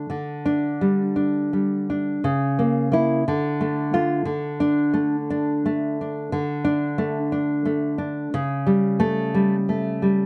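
Set in a light reverb, this brief passage from a longer romantic piece for solo classical guitar sits up front with a full-bodied, deep nylon-string tone, fingerpicked between C#3 and F4 in a passionate yet intimate 6/8 at 55-62 BPM in dotted quarters with flexible rubato, moving from Dsus4 through C#m6, Dm and D5 before settling on A7/C# at 8.3 seconds.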